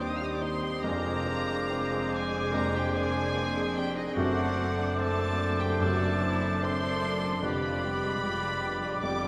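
Freely rubato in 4/4, this tragic, brooding classical passage, cut from a longer piece, sets a polished grand piano and an intimate, bowed chamber violin section on the melody. A pure flute section, a distant oboe, a roomy clarinet and a second, background violin section weave secondary lines over a dark bassoon and a very quiet viola section, while the cello and double bass sections anchor the bass. At 0.9 s mellow French horns and a tight trombone section add soft sustained chords as the harmony drifts from Cm/Eb toward G7/F, all bathed in a wet scoring-stage reverb.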